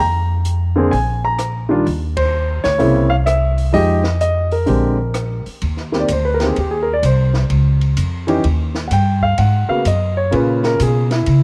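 This jazz piano trio swings at 128 BPM in 4/4 with a warm, easy lilt, set in Eb major and tuned to A4 = 438 Hz. Up front, the grand piano carries the melody while the pizzicato upright bass, woody and steel-strung, holds down the low end close by. A compact cocktail drum kit joins at 0.4 seconds on hi-hat, kick, ride, rim click and snare, sitting distant and roomy with dark cymbals, a high-tuned snare and a punchy kick. The band hits a shared accent at 2.1 seconds as the harmony moves through suspended, minor ninth and altered dominant colours, and from 5.6 seconds the piano takes a solo over the second section's shifting major and minor chords. Light reverb surrounds the trio in this passage cut from a longer piece.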